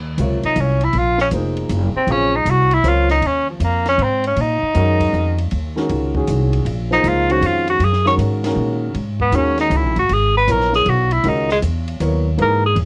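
A vibrato-rich, vintage tenor saxophone solos up front through this cool, spiritual modal jazz excerpt in swung 3/4 at 157 BPM, shifting from Eb dorian to C# dorian at 8.9 seconds, over a woody, thumpy pizzicato upright bass, an intimate grand piano with audible action noise and deep lows, and a dry cocktail drum kit with dark cymbals, a high-tuned snare and a punchy kick, while the saxophone, piano and drums carry a cassette-tape character in a home recording with light reverb.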